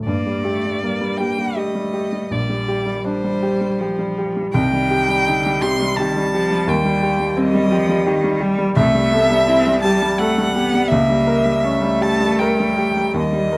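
In a flexible, rubato 3/4 at about 78-87 BPM, this lyrical and tender slow romantic movement for piano trio unfolds in G minor, with the chords moving through Gm, Cm and Am7/C before settling on C#dim7 at 10.9 seconds. A smooth, vibrato-laden violin sings the melody up front, over a focused, close bowed cello carrying a second line with its own rich vibrato. A warm, natural baby grand piano sits up front as accompaniment, all set in a moderate large studio reverb in this short excerpt lifted from a longer piece.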